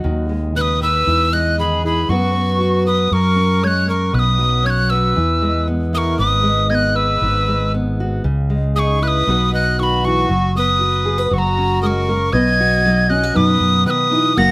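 Close, detailed microphones and light reverb frame this warm, nostalgic acoustic folk piece at 117 BPM in B major: a breathy, mellow tin whistle with vibrato and a crisp, chiffy attack carries the melody up front over a fingerpicked steel-string acoustic guitar and an amped fretless electric bass, while a reedy accordion with slow beating adds a smooth second line, and a felt-muted upright piano, with audible action noise, enters at 12.3 s with dark, short-sustained arpeggios.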